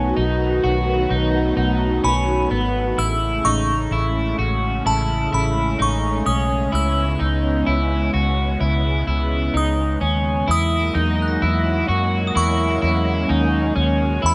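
Ethereal, dreamy dream pop at a slow 64 BPM, cut from a longer piece, where a glassy FM synth bell sings a high melody over lush phased string-machine chords, a slightly broken-up, twangy electric guitar picks chorused arpeggios up front, a dark, foam-muted fingered bass keeps things round and punchy, and a faint brass-mallet glockenspiel rings in the background from 11.2 seconds as the chords move from B7 through Amaj7 and C#m7 to F#13/E, all in a rough home-demo mix with moderate studio reverb.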